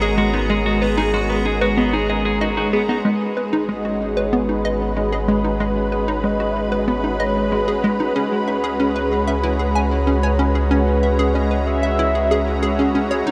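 A straight, steady 4/4 pulse carries this hypnotic, expansive stretch of sequencer-driven space music, cut from a longer piece and bathed in a huge ambient reverb that leaves the whole mix dreamy and soaked. Up front, a lush unison pad holds thick, detuned sustained chords with chorus and shimmer reverb, while a hollow, bouncy square-wave pluck repeats a riff with a fast attack, sub-octave weight and a touch of noise, echoed on tape. Beneath them a round analog bass, deep and evolving with a wave-folded edge, anchors the low end, and a faint bubbling texture of random resonant filter steps sits in the background. A clean, twangy electric guitar picks bright arpeggios through shimmer and tape echo only until 3.0 seconds, and at 3.1 seconds a mellow horn-like synth lead enters with the melody, soft-attacked with vibrato and a filter sweep, set back in the mix. The harmony rests on G#m7 before moving to C#m7 at 8.2 seconds.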